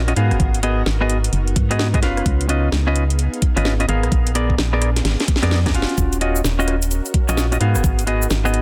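A dark, hollow, organ-like FM bass sits up front in this skippy, late-night two-step UK garage excerpt at 129 BPM with a swung 16th feel, joined by clean, hollow-body guitar stabs with dub echo, a knocking overdriven electronic kick, a house kit of cracking snare, rim click and metallic hats with a drum fill from 5.0 to 6.0 seconds, a silky string machine pumping softly in the background over Abm7, Db9, Bb7b9 and Ebm9 chords, and a grainy egg shaker arriving at 6.0 seconds, all in a dry, dense, heavily limited mix.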